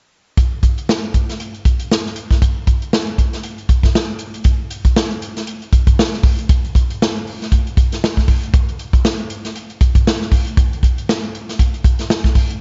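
A funky 4/4 groove at 118 BPM with a 56% swing on the 16ths gives this short cut from a longer piece a sly feel, carried entirely by a swinging big-band drum kit of hi-hat, kick and snare that runs from 0.4 to 12.6 seconds. The acoustic kit sits up front with a punchy kick, a medium-tuned snare and an airy, polished hall character, while the dry room and rolled-off top end keep the sound close and slightly dusky. At 4.5 seconds the pattern moves into a new section that carries the groove to the end.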